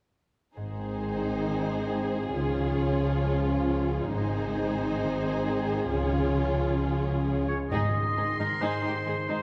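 A heroic, soaring cinematic passage in Ab major at 134 BPM opens with a lush orchestra. A smooth-topped violin section sings the expressive melody over a darker second violin line and violas with portamento, while a clear French horn section sustains chords and a ringing concert harp plays fingerpicked arpeggios in the background. Warm cellos and soft-attack double basses anchor the bass as the harmony moves between Ab and Db under a wet scoring-stage reverb. Near 7.5 s, just after the horns have fallen away, an up-front oboe adds a distant, classical-style second line, and round, soft-mallet timpani sound briefly at 7.7 s.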